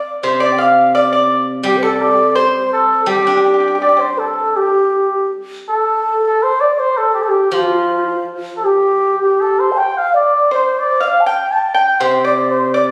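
Pastoral and graceful, this excerpt from a longer Chinese traditional chamber piece moves in a rubato 2/4 at around 81 BPM in the G shang mode. Up front, a cup-muted trumpet carries the melody with a soft, veiled tone and jazz-style scooped notes. A low bamboo xiao plays a second line throughout, its end-blown sound airy and hollow with a straight, tongued tone heard close to the microphone. The pipa adds a dry, percussive second line played with fingerpicks, dropping out after 4.0 seconds and returning at 10.5 seconds. Beneath them, a steel-string zither plucked with fingerpicks gives ringing, silvery accompaniment in the low register, coming and going in passages. The ensemble sits in a moderate recital-hall reverb, captured on a phone in the room with added studio reverb and compression, and the music shifts into a new section at 4.6 seconds.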